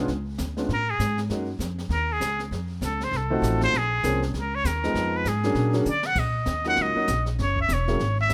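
Light reverb frames this moody, late-night small-group swing excerpt, with a nasal, straight-muted trumpet up front carrying the solo melody from 0.7 seconds, its soft attack and vibrato bathed in plate reverb. Beneath it, a woody, thumpy pizzicato upright bass on gut strings and a warm, long-sustaining upright piano accompany through the chord changes. A brushed jazz kit with a high-tuned snare and boomy kick sits low in a small room and adds a short fill at 5.9 seconds.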